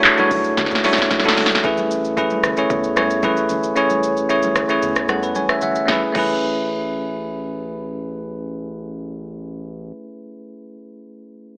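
A straight 4/4 amapiano groove at 113 BPM in A major, this soulful fragment of a longer piece opens with a punchy, layered deep house kit of kick, snare, handclaps, rim click, hi-hat, shaker and crash, a drum fill at 0.6 seconds, and a hollow, bouncy log drum bass tucked in the background until a deep, saturated sine sub bass takes over at 1.6 seconds. Acoustic congas with thick skins sit low behind the drums, which stop at 6.3 seconds, while a bell-like, bright tine electric piano stays up front throughout, moving from Bm11 to Amaj7 and adding a fill of its own partway through. The mix carries light reverb, digital ambience and an AM radio sound.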